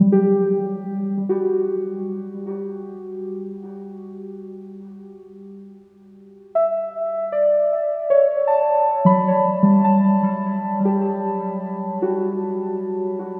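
Warm and weightless, this short ambient fragment drifts in free time, centred on G Lydian with the tuning set to A4 = 442 Hz. A single part carries the whole piece: muted, felt-like synth keys that play solo from 0.0 to 13.4 seconds, ranging from F#3 up to B5. Their tone is soft, intimate and full-bodied, blending triangle and sawtooth colours with a noise layer, and each note has a fast attack before decaying into a dark glow. A lone F#5 opens the fragment before a Gmaj9 chord arrives at 0.6 seconds and settles in for the rest of the passage. The keys sit up front, shaded with chorus and analog delay, while a lush hall reverb lasting about 3.4 seconds soaks the dreamy mix in studio ambience.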